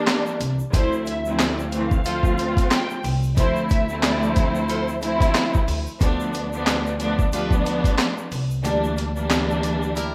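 A swung 91 BPM boom-bap beat in D minor drives this tough, moody hip-hop excerpt, with gritty, pitched-down sampler drums (thumpy kick, high-tuned snare, handclaps and hi-hat) up front over a grainy egg shaker in the background and woody pizzicato upright bass, while a filtered studio string section plays smooth, expressive bowed accompaniment, a dark, lush violin section carries a delayed melody until 5.3 seconds, clear jazz-style horn stabs sit in the background from 2.1 seconds, and the kick falls silent at 8.6 seconds, all in a rough home-demo mix with vinyl crackle and light reverb.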